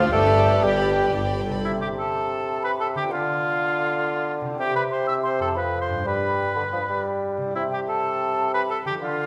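In a straight 3/4 at 122 BPM, this mischievous, quirky cinematic excerpt in C major opens with a brief full-ensemble gesture in the first 1.6 seconds. Soft-attack sul tasto violins carry the melody while a second violin section traces a line above. Very quiet violas supply accompaniment, and cellos, double basses and a distant tuba anchor the bass. A very quiet, mellow French horn section holds sustained chords beneath. By about 1.7 seconds the strings, brass and bass have fallen away, leaving a close-miked, up-front oboe and an up-front bassoon, with a hollow silver flute in the background and a ringing, fingerpicked concert harp spinning arpeggios over a G, C, F progression. A recital-hall reverb gives the whole texture an intimate yet roomy glow.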